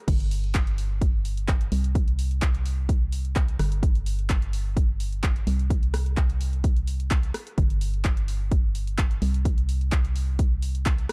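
Feel-good and euphoric, this short piano house excerpt in straight 4/4 rides on a layered, punchy electronic kick set up front. An organ-like FM bass, hollow and percussive with a quick decay, sits between G1 and C2 and pumps from sidechain compression, while a punchy, overdriven analog drum machine adds crash cymbal, handclaps, hi-hat and rim click lower in the mix. The production is dry and dark, with little reverb.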